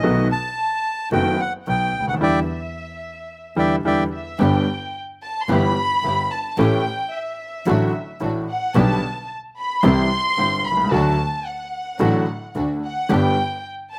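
A rubato 4/4 tango at 110 BPM, this sultry, tense excerpt opens in E minor with a reedy bandoneon carrying the melody for its first 4 seconds, over a clear, vintage concert grand with deep bass, a dark, bowed double bass played sul tasto, and an intimate chamber violin section with a smooth top on a second line, piano and violins touched by slapback echo. After a band accent, the music turns to G major at 4.4 seconds, where the violin section takes a solo and a lush studio string section adds background stabs. The dry, close sound has little reverb, and the violins hold on to 14.0 seconds after the other parts stop.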